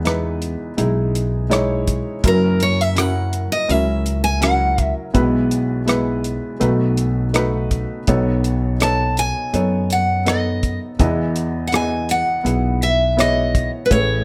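A picked steel-string acoustic guitar carries the melody in this hopeful, tender acoustic folk-pop ballad, entering at 2.3 seconds with a bright, up-front tone. Beneath it, a felt-muted upright piano plays soft, mellow accompaniment with short sustain and audible action noise that gives it an intimate, natural character. An upright bass, played pizzicato with a woody sound, anchors the low end, while a cloth-damped, thuddy drum kit of kick, hi-hat and rim click keeps a small-room feel with a tight kick and a rolled-off top. The tune moves at a relaxed 82 BPM in straight 4/4 and in E major, gently cycling from Emaj7 through F#7, E/B, B7 and B9 before settling back on Emaj7 at 11.0 seconds. Light reverb surrounds the close, up-front mix of this short cut from a longer piece.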